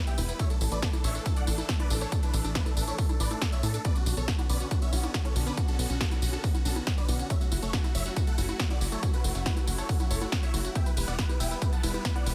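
Uplifting trance cut from a longer piece, emotional and driving, in a straight 4/4 built on a dry sound with a punchy electronic kick up front, entering at 0.4 seconds, and a big-room dance kit of crisp hats, punchy snare, ride cymbal, tambourine and congas, both tape-warm and re-recorded in a large room. A tight, dark sequencer bass with a filter pluck and fast attack pumps under the kick, while a lush supersaw pad holds sustained chords and a full-bodied unison pluck spins delayed arpeggios in the background, both pumping too. On top, a huge, euphoric supersaw lead carries the melody, bright and compressed, coloured by phaser, dub echo and sidechain pumping.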